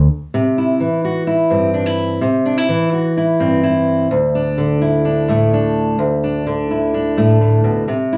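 Folk at 128 BPM in a straight 4/4, this short anthemic, warm cut from a longer piece features a fingerpicked steel-string acoustic guitar playing accompaniment from 0.3 to 8.2 seconds, ranging from D2 to F#4. The guitar sits up front with a warm auditorium tone, moving from a C chord to D5 at 4.1 seconds. A moderate studio reverb gives the sound a sense of space.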